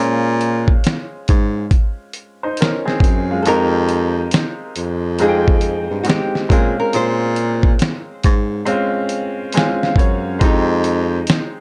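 A gritty, thumpy sampler-style soul drum kit with a fat snare sits up front in this hazy, reflective lo-fi hip hop fragment at 69 BPM with a swung 16th-note feel, its kick dropping out from 3.5 to 5.2 seconds, while a breathy baritone saxophone with vibrato and a jazzy subtone carries the bass line, a bright, woody upright piano with audible action noise accompanies through a low-pass filter and adds a fill at 9.1 seconds, and a small fingerpicked nylon-string guitar plays the melody in the background through a low-pass filter and tape echo over Bbm9 and Fm9 chords, all set in light reverb and a dark, warm production.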